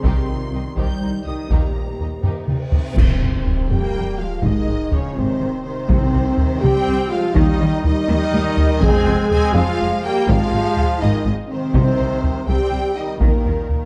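In a 6/8 pulse at 82 BPM counted in dotted quarters, this heroic, dramatic cinematic orchestral cue in F minor is driven by a taiko ensemble struck with heavy sticks, with dark clash cymbals and concert bass drum in the opening seconds and drum fills around 2.2 and 8.1 seconds. Lush violin sections carry a vibrato-rich melody and second line over smooth violas, while dark, distant French horns and clear trombones hold sustained chords and woody cellos with rich double basses supply the bass in the background. A huge, bright reverse cymbal and impact land the band accent at 3.0 seconds, and articulate, very quiet timpani on hard mallets mark the phrases in a moderate scoring-stage reverb with a dark production.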